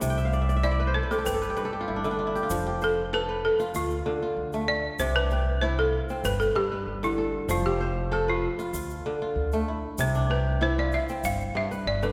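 West African traditional music with a joyful mood: a crisp, ringing, fingerpicked kora plays a fill over thumpy pizzicato upright bass and a grainy tube shaker, the woody, buzzing balafon enters at 0.6 seconds and takes a solo from 2.5 seconds, struck with hard rubber mallets, and the whole passage sits in the wet reverb of a concert hall.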